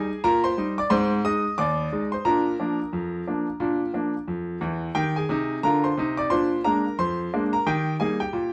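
Cheerful and lively, this short cut from a longer ragtime piano piece bounces along in a swung 2/4 feel. A bright grand piano plays solo throughout, spanning from Eb2 up to Eb6 and sitting up front with a brilliant, intimate tone. The audible action noise of the instrument adds a close, tactile presence to the performance. The harmony moves through Eb, Ab and Bb before a Bb7 leads back home to Eb at 7.7 seconds. A wet studio reverb gives the room a lively glow around the piano, as if captured live in a single space.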